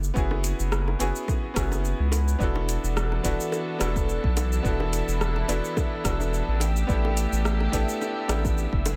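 A light digital ambience surrounds this smooth sunset chillout excerpt at 107 BPM in 4/4, with a gentle 16th-note swing, moving through F#9sus4, E9sus4 and A9sus4. A round analog bass sits up front beneath an overdriven electronic kick and a deep house kit of metallic hi-hats, rim click and shaker, with tight, high-tuned bongos in the background and a brilliant concert grand piano carrying tape echo. Dark, floating bowed strings enter at 2.4 s, and a faint, breathy wind-like noise texture drifts in at 3.8 s.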